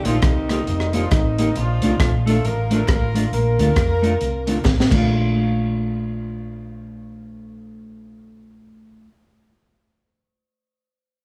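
Ska at 136 BPM in Bb major with a swung, upbeat and joyful feel, cut from a longer piece and moving from Cm7 to Bbmaj7. A loose horn section with vibrato and octave doubling carries the melody through tape echo until 4.6 seconds, over a clean, picked semi-hollow guitar bathed in lush chorus and echo, a round, amped hollow-body short-scale bass up front, and a very quiet, crisp group handclap. A crunchy, saturated breakbeat kit with a punchy kick, high-tuned snare and dark cymbals plays until a drum fill at 4.7 seconds, after which guitar and bass carry on to 9.1 seconds in a moderate club reverb.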